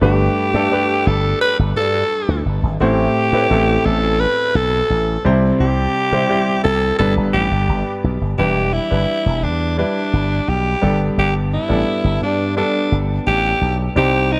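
At a relaxed 86 BPM in straight 4/4, this 1980s-style pop excerpt in G major moves with a glossy, uplifting lift, cut from a longer piece. A raspy alto saxophone carries the melody up front, its bright, gritty pop-style tone colored by vibrato. Underneath, a slap bass run through an envelope filter sounds electric, growly and punchy, sitting as far forward as the sax. A clear concert grand piano fills out the accompaniment with a natural tone and deep low end. The chords move from Gadd9 through Am, C and G before turning to Em7 at 8.4 seconds for a second section, then coming back to Gadd9. Light reverb and a studio ambience give the whole a polished, close sound.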